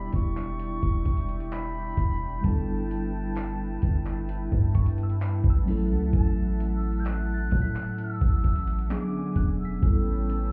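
A dusty, sampler-style drum kit sets a slow, straight 65 BPM pulse in 4/4, its thumpy kick, hi-hat and handclaps sounding compressed, gritty and tape-warm from 0.1 s. Beneath it, a long, sine-like 808-style bass sits deep and up front, each note striking fast and then decaying, while a mellow, clean tine electric piano carries the accompaniment through a moody E dorian progression that moves from Em7 to G69 and F#m7/A before closing on E13 and A9. A smooth, warbling analog pad holds sustained chords with a slow attack, detuned vintage colour, chorus and sidechain pumping. Over this, a pure, straight-toned concert flute sings a tongued, longing melody high in its range, trailed by digital delay, while a soft, round, dark pluck with chorus and delay glimmers in the background. This contemporary R&B fragment, cut from a longer piece, has the whole mix heard as if muffled through a wall, coloured by club reverb and EQ, with little reverb of its own.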